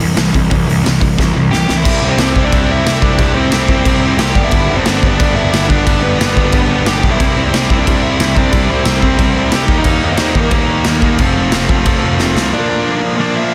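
A straight 4/4 punk rock pulse at 180 BPM drives this rebellious, upbeat clip from a longer piece in C major, with a raw garage drum kit up front: a boomy kick, medium-tuned snare, hi-hat and crash sit in a bright stone room that pumps and grits with saturation. A tight distorted guitar pounds out the riff from start to finish, bright and picked, while a growly fuzz bass, direct and amped with overdrive, holds down the low end. A very quiet overdriven semi-hollow guitar adds a hollow-body riff from the opening through the first drum fill, drops out, then returns at 7.2 seconds. A dark, smooth overdriven lead guitar enters at 1.5 seconds with a picked melody trailed by tape echo. The chords move from C through G, C, Eb and F before the music falls into half time on Bb at 12.5 seconds, all in a dense, heavily limited modern master with little reverb.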